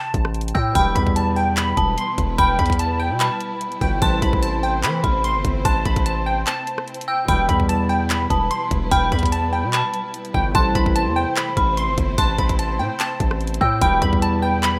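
A half-time trap groove in 4/4 drives this menacing hip hop excerpt, built on a layered electronic garage kit of tight kick drum, hi-hat, handclaps and rim click. Underneath, a distorted 808-style bass sits up front, heavy and saturated, with a fast attack and decaying notes. The lead is a glassy wavetable pluck, crystalline and digital, colored by ring modulation, a moving notch, a filter sweep and chorus. At 0.5 seconds a dark detuned synth bell enters with an eerie, inharmonic FM tone and long release, treated with chorus, phaser, plate reverb and tape echo. A bright, fingerpicked concert harp rings beneath them with plate reverb, and from 0.8 seconds a smooth, bowed studio string section holds sustained chords with vibrato. The harmony moves between A minor and E minor, a brief break arrives at 6.5 seconds before the phrase repeats, and the track has the rough, moderately reverberant sound of a home demo cut from a longer piece.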